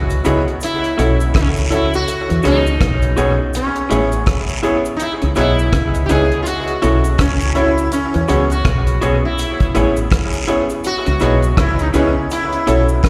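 Romantic and sweet, this lovers rock reggae excerpt sets a buzzing, shimmering sitar melody with tape and slapback echo over a round, up-front dub bass, a damped, dark drum kit of hi-hat, kick and rim click, a dark, compressed guitar riff, twangy lo-fi guitar stabs, a clear baby grand piano with long sustain, and close, dry cabasa and guiro, all heard as a live gig through the venue's PA with club reverb while chords such as C#m7, B9sus4, E69 and Amaj7 cycle beneath.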